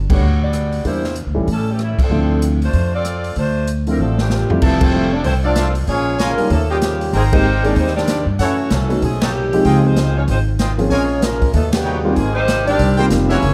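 A woody, thumpy upright bass opens this excerpt from a big band swing piece, joined almost at once by a clear saxophone section carrying the melody, an intimate grand piano with audible action noise, and a polished, airy drum kit with dark cymbals and a punchy kick. The mood is brassy and sultry, with a firm swing in 4/4 and band accents punctuating the line at 0.1, 1.9 and later points. A drum fill at 4.0 seconds brings in a vintage-toned trombone section with soft attack and vibrato as a second line, and at 4.6 seconds a brilliant trumpet section adds stabs over a shift into a new section. The harmony moves through rich jazz chords such as Abmaj9, Dbmaj9#11 and Abmaj13, giving the later passage a lush, searching color. The bass sits up front while the saxophones sound distant and roomy, all within a dark production and light reverb.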